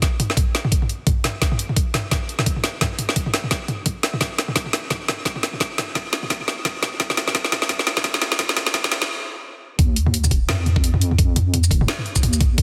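A dense, heavily limited mix set in a lush hall reverb frames this dark, heavy half-time drum and bass cut at 172 BPM, with a swung 16th-note feel. An up-front, overdriven electronic kit of woody snare, bright hats, shaker and toms, layered with a knocking kick, carries a build-up with a long drum fill and filter sweep, then stops at 9.1 seconds. At 9.8 seconds the drop arrives as a deep, chorused wobble bass, sustained and compressed, rolls in beneath the drums.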